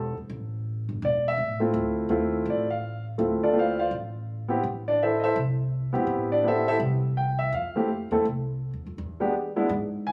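A warm upright piano carries the melody up front, its natural tone touched by plate reverb, while a woody, thumpy pizzicato upright bass on gut strings anchors the low end for the full 10.1 seconds. This cool, smoky jazz piano trio cut swings easily in 4/4, moving through minor-seventh and major-seventh chords before settling on a dominant chord near the close. Captured on a phone in the room, it carries a moderate studio reverb and the murmur of club ambience.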